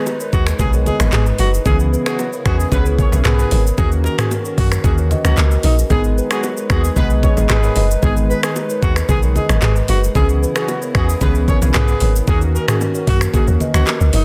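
A breathy, whispered alto saxophone with digital delay opens this mellow, sultry afrobeats fragment in G# minor at 113 BPM, over glassy chorused digital keys and a hollow, flute-like pad, as an up-front electronic drum kit with a knocking kick, metallic hats, snaps, claps, shaker, toms and a softly clipped snare arrives alongside very quiet bongos and congas, a woody kalimba riff with delay and a deep, round log drum bass, while a distant horn section adds a second line from 2.1 to 12.1 seconds, set in studio reverb within a dense, heavily limited master.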